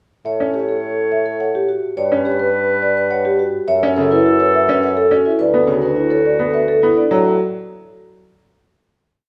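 Bright and hypnotic, this short minimalist classical piece moves at 105 BPM in a straight 3/4 in A mixolydian, cycling through A, G, F#m7 and Dmaj9. Soft-mallet marimba carries the melody in a woody, round repeated cell, while a metallic, ringing vibraphone spins arpeggios, a brilliant, worn baby grand piano adds short-sustained accompaniment figures, and a mellow bassoon holds long bass notes with light vibrato. A vintage-toned clarinet adds a second line of soft-attacked, swelling held notes until 6.9 s, and a moderate recital hall reverb surrounds the ensemble as the music settles from 7.1 s.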